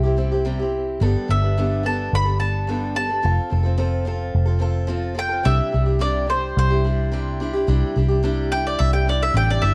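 A light reverb gives this short cut from a longer folk rock and heartland rock piece a hopeful and nostalgic glow, moving at a straight 108 BPM in 4/4 over a progression of C, Gadd9, F and Cadd9. A boxy, picked acoustic archtop guitar and a dark, round, foam-muted vintage electric bass sit up front from the start, with the amped bass fingered low beneath the guitar's accompaniment. At 1.3 seconds a warm, woody, double-strung mandolin enters to carry the melody as a solo in its upper range through to the end at 9.7 seconds.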